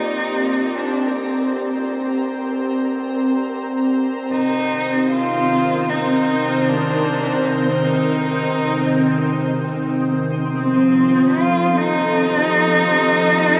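Unfolding in free time, this peaceful ambient passage, cut from a longer piece, drifts through Gsus4, Cm7 and F7 inside a vast, echoing cathedral space. Up front, an airy, detuned pad holds soft sustained chords with a gentle chorus, while a single bowed cello sings an expressive, warm melody with vibrato and portamento through a diffuse ambient delay, fading in across the full 13.6 seconds. Farther back, a bright granular texture twinkles with an octave-up shimmer, also fading in gradually over the whole span.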